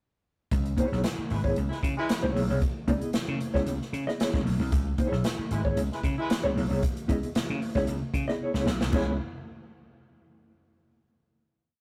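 Sly and funky, this funk piece moves at 114 BPM in 4/4 with a straight feel in C# minor, opening on a C#m7 chord. A vintage slap bass, bright and growly, sits up front from 0.5 seconds with a syncopated riff anchored on the downbeat, full of muted ghost notes and chromatic approach notes. Alongside it, a swinging big-band drum kit with an airy, polished hall sound, a medium-tuned snare and a punchy kick plays a syncopated funk groove with ghost notes, closing the groove with a fill at 8.4 seconds. A mellow electric guitar, dark, clean and compressed with tremolo, adds clipped funk chords up front, while a distant, roomy horn section plays short ensemble stabs, first briefly at 1.3 seconds and then again from 5.5 seconds. The whole take has the rough feel of a rehearsal room, with tube saturation and light reverb, and it ends on a final chord ringing from 8.9 to 11.0 seconds.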